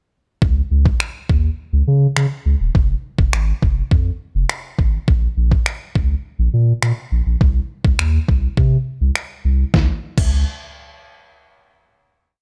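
A round, deep sine sub bass with sidechain pumping and a detuned, overdriven 8-bit drum machine with a thumpy kick, medium-tuned snare, finger snaps and crash cymbal both arrive up front at 0.4 s, driving a summery, upbeat dance-pop piece in Db major at 103 BPM with syncopated bass and beat, a dry, close sound, and a final note ringing from 9.7 s.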